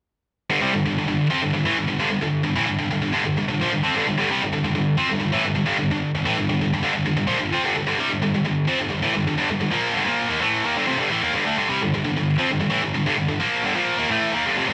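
A bright, distorted high-gain electric guitar, picked, double-tracked and up front, takes a solo in this menacing, aggressive rock excerpt at 130 BPM in G dorian, ranging from F2 to C4 over a G minor chord from 0.5 to 14.7 seconds in a live room with a wet studio ambience.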